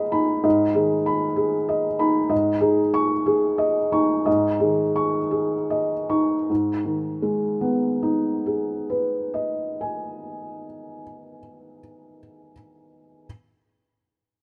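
Rubato in 6/8, the pulse drifts around 50-65 BPM counted in dotted quarters, and it slows between 1.4 and 6.5 seconds. This neoclassical minimalist piano piece in G# minor, tuned to A4 = 442 Hz, sits in an intimate, wistful mood. A felt-muted upright piano plays alone from start to finish across a span from G#2 to C#6, its tone soft and mellow through thin felt and placed up front. The harmony rests on G# minor, shifts to C#sus2 over a G# bass at 2.3 seconds, and returns to G# minor as a new section begins at 6.5 seconds. Light studio reverb surrounds a rough home demo mix, and the recording is a brief cut from a longer piece.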